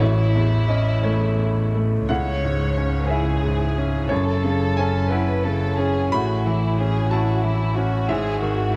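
This fragile, reflective fragment of neoclassical piano and strings opens with upright piano, double bass and a chamber violin section sounding together from the first moment. The piano sits up front with a bright, woody tone and long sustain, spreading its accompaniment from deep bass notes up into the high register. The bowed double bass, a single close player also set up front, holds the low end with a warm sul tasto tone, light vibrato and an airy bow. The violin section carries the melody in the middle register, its soft-attacked sul tasto playing intimate and smooth, touched by an analog delay and sitting a little quieter than the other parts. The music moves freely in six-eight with rubato, passing through A, C#m, F#m7 and A before reaching Emaj7/G#, with a new section arriving at 2.1 seconds, and a lush hall reverb soaks the mix in a dreamy haze until the fragment ends at 8.8 seconds.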